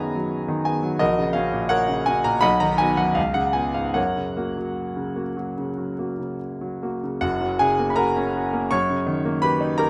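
Close, detailed microphones and light reverb put a polished, intimate concert grand piano up front, its action noise audible and its deep bass ringing with long sustain. This is a romantic character piece for solo piano in F# major, tuned to A4 = 436 Hz, moving in 4/4 with a rubato feel at roughly 72 to 89 BPM. The mood is passionate and warm, and the piano covers a span from F#1 to D#6. The harmony opens on G#m7 over an F# bass, then moves through F#/A#, B and C#7 before settling on F# at 4.0 seconds. A new section begins at 7.2 seconds, and a D#7 over F# arrives at 8.7 seconds as this fragment of a longer piece breaks off.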